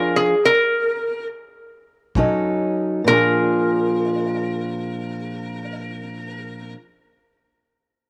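A slow, swung 4/4 pulse of about 67-72 BPM sets a gritty, soulful tone in this short cut from a longer acoustic country blues piece in Bb mixolydian, and the tempo slows through the first 3.0 seconds with a stop in the opening stretch. Up front, a lap resonator guitar carries the melody within a narrow span from Ab4 to Bb4, its metallic, nasal slide tone played with fingerpicks and given a slapback echo. Beside it, an old ladder-braced acoustic guitar fingerpicks the accompaniment from Bb2 to A4, sounding dark, woody and boxy on old strings. A tight, polished kick drum played with brushes appears briefly at 2.2 seconds, airy in its studio room and set further back than the guitars. The harmony moves from Bb7 to B9 at 2.1 seconds and returns to Bb7 at 3.0 seconds as the passage enters its second section, all within a small room with light reverb.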